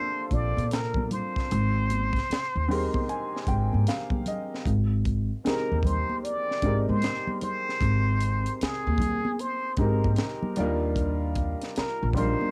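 A swung sixteenth-note groove from a tight, dry funk kit with handclaps, hi-hat, a high-tuned snare and a tight kick, joined by soft-handed, ringing congas in the background, carries this relaxed neo-soul R&B excerpt, where a breathy, plunger-muted trumpet sings a wah-wah jazz line full of vibrato and scooped notes over an intimate, slightly detuned upright piano that adds a fill from 2.3 to 4.7 seconds, a woody pizzicato upright bass with transformer saturation sitting up front, and a Bbmaj9, Abmaj9 and Ebmaj9 progression, the whole set in the light reverb of a home cassette recording.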